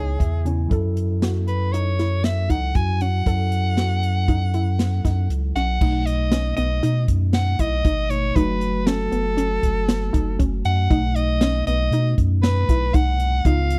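Driving and intricate, this progressive instrumental excerpt in 5/4 sets a raspy, forceful soprano saxophone melody over clean tine electric piano chords that open with a brief fill, warbling lo-fi pluck arpeggios with chorus, a round, deep analog bass sitting up front, and a punchy big-band drum kit with dark cymbals entering at 0.2 seconds, all captured in a dry, close 1970s-style studio sound as the harmony moves from C#m7 toward B7.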